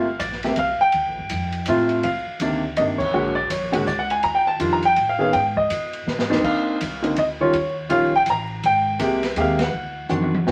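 Jazz piano trio in a smoky, swinging 3/4 at 164 BPM, cut from a longer piece, with swung eighth notes, a vinyl crackle and a wet studio reverb. A warm, natural baby grand piano carries the melody up front from the first moment, sitting well above the other two players in the mix. Upright bass plays pizzicato beneath it, woody and thumpy with steel strings. An acoustic drum kit enters at 0.2 seconds, heard in a small room with dark cymbals, a medium-tuned snare and a boomy kick. The harmony moves through rich extended chords, from Gm11 and Cm9 through Bb7alt, Ebadd9 and Abmaj9 to a closing D7b9. The trio hits a band accent at 3.0 seconds, and the drums break into short fills, the last one running out to the end at 10.5 seconds.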